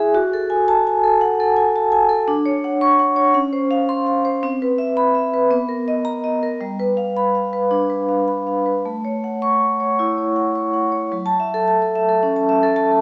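Contemporary classical music for solo vibraphone at a rubato 110 BPM in 4/4, this warm, flowing 13-second excerpt carries the up-front, metallic, ringing tone of medium hard mallets with slow motor vibrato across a range from F#3 to C#6, drifting through lush seventh chords such as Dmaj7, C#maj7, Cmaj7 and Bmaj7 before a G7 and A6 lead to a new passage on F#m7 at 11.1 seconds, all set in a boxy, wet recital hall reverb with a small-speaker sound.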